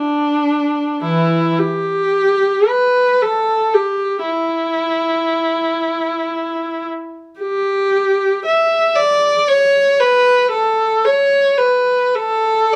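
Classical solo for unaccompanied viola, nostalgic and lyrical, moving in a free, expressive 3/4 with uneven beats and rubato. A single bowed viola carries the whole 12.8-second excerpt from a longer piece, ranging from E3 to E5 with a rich, focused tone and vibrato, sitting up front yet with a slightly distant quality. Light reverb surrounds the instrument.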